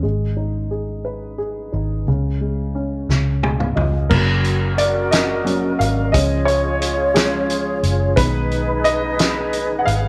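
A dark, woody upright piano plays this tender, swaying six-eight pop ballad in F# major at 59 BPM over a round, foam-muted vintage fingered electric bass, as a loose indie drum kit with a fat snare and punchy kick enters alongside a piano fill at 3.1 s, and an airy, vibrato-laden large flute ensemble holds sustained chords beneath a piano solo from 4.1 s, the whole excerpt set in moderate spring reverb and small room ambience.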